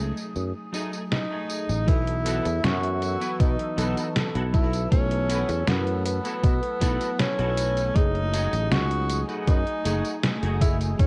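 Melancholic and nostalgic, this vaporwave piece unfolds in a straight 4/4 at an unhurried pace, heard here as a short cut from a longer work. A lush, dreamy FM electric piano with a soft pad layer sits in the background, coloured by analog chorus, cassette tape and tape echo, while a very quiet, warbling lo-fi pad holds sustained chords alongside it. A bright, clean semi-hollow electric guitar picks a riff through tape echo and ensemble chorus, and a filter sweep on clean electric guitar opens the first 1.9 seconds. Up front, a growly fretless bass with tube saturation anchors the low end. A detuned 8-bit drum machine with a fat, overdriven snare, hi-hat and tambourine begins almost at once, the breathy tenor saxophone enters at 1.1 seconds with vibrato and tape echo, and a thumpy, overdriven electronic kick arrives at 1.9 seconds. The harmony moves from F#m69 to B7sus4 and back to F#m69, all bathed in light reverb, digital ambience and a cassette-tape haze.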